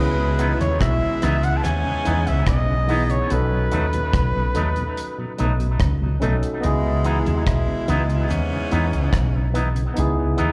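This is a slow, straight 4/4 lovers rock reggae groove with a longing, smooth mood, cut from a longer piece and heard as a live gig through the venue's PA with club reverb. A deep, dry drum kit with a tight kick, hi-hat and rim click enters at 0.4 seconds, under a dark, round, up-front fretless bass that sounds woody and punchy. An electric guitar with an envelope filter plays clean, picked, scooped stabs touched by tape and slapback echo, while a barky, gritty overdriven tine electric piano comps through a combo amp. A mellow tonewheel organ sits very quiet beneath, with key click and a slow rotary speaker. A close-miked flugelhorn carries the melody with vibrato and echo until 5.8 seconds, over a clear saxophone section on the second line that stops at 9.5 seconds, as the chords move from C#m9 to B7 and back to C#m9.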